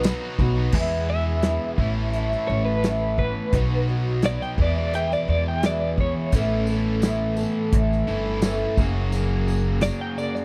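Open-road and warm, this folk rock and heartland rock excerpt moves at 86 BPM in E major, with a clean, compressed twelve-string electric guitar carrying the tremolo melody from 1.1 seconds over a dark, shimmering picked twelve-string acoustic, a bright overdriven double-tracked stack guitar riff, a woody, growly upright bass up front, a punchy natural country drum kit, a very quiet breathing harmonium, and a jingly, distant tambourine, all caught in a dry, close 1970s-style studio sound.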